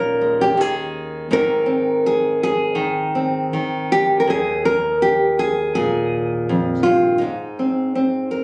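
Folk fingerstyle with a peaceful, nostalgic mood: a solo nylon-string guitar, fingerpicked and sitting up front, plays freely at around 82 BPM in Eb mixolydian, drifting through Eb7sus4, Abadd9, Ebsus4 and Ab. The guitar has a deep, classical warmth with audible finger squeaks. It was captured on a phone in the room, giving light club reverb and compression across this brief 8.4-second excerpt from a longer piece.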